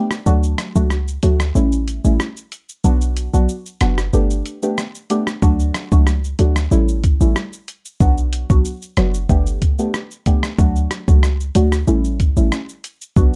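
A straight 4/4 dancehall groove at 93 BPM sets a sunny, summery mood in D major, driven by a muffled, pitched-down sampler-style drum kit with a thumpy kick, rim click, hi-hat and shaker, a punchy, tight 808-style bass built on a sine with a noise layer and fast attack, and deep, mellow chord stabs treated with chorus and phaser that cycle through D, A7, Bm and Gadd9, all three parts sitting up front in a dark production with light reverb and a break running from 0.0 to 5.4 seconds.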